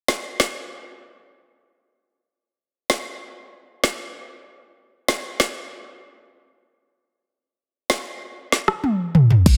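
A layered electronic drum kit opens the piece at 0.1 s, setting up a tough, sultry dancehall groove at 96 BPM in a straight 4/4. The kit sits up front, with a deep kick, a woody snare and dark hi-hats, joined by rim clicks, crash cymbal and toms. Near the end a drum fill runs from 8.8 to 9.5 s. Just as it closes, a clean, sine-like 808-style bass appears in the background at 9.5 s, sounding boomy and mellow around Cb2 with a fast attack and a decaying tail. Light reverb surrounds the parts, and this short cut from a longer piece carries a dense, heavily limited modern master.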